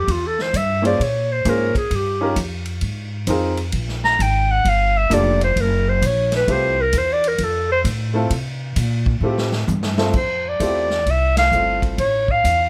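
Sophisticated and warm, this small-group swing and bop jazz piece in F major moves at 131 BPM. A vintage-toned clarinet with vibrato and a soft subtone attack carries the melody as a solo until 10.1 s. Beneath it play a thumpy, up-front pizzicato upright bass on gut strings, a smooth upright piano with short sustain, and a distant, roomy drum kit with dark cymbals and a punchy kick, which plays a fill from 9.2 s before a band accent lands at 11.3 s, all set in light reverb.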